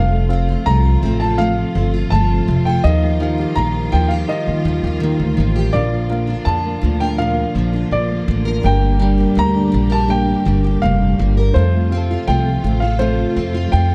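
In a straight, easy-going 4/4 at 83 BPM, this carefree acoustic pop passage rides on an up-front, thumpy pizzicato upright bass with gut strings, under a dark, warm production with light reverb. A vintage upright piano with short sustain carries the melody through plate reverb and delay, while a double-tracked, picked plugged-in steel-string acoustic guitar with finger squeak and a thumb-plucked flamenco guitar playing arpeggios in the background fill in the harmony. A reedy, worn, slightly out-of-tune electric piano with fast tremolo adds accompaniment in the background, and a lush, bowed studio string section with vibrato sustains chords over F, Ebadd9, Bb and Gm before returning to F.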